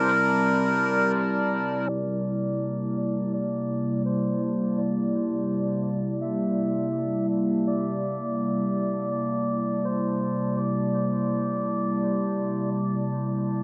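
A dark, warm production sits in a wet echo chamber, with a low-pass filter softening the top end and a filter sweep running from 1.9 seconds to the close of this excerpt cut from a longer piece. It is a spacious, peaceful ambient passage at 83 BPM in straight 4/4, set in C mixolydian over a C13 chord. A warbly, tape-like pad holds sustained chords from C3 to A5 throughout, its slow attack and long release giving a nostalgic, lo-fi glow, thickened by chorus and its own reverb. Up front beside it, a reedy, breathy melodica carries the melody between Bb4 and E5, its nasal, plastic-cased tone thrown into dub echo until it stops at 12.7 seconds. The pad sounds on alone until 13.6 seconds.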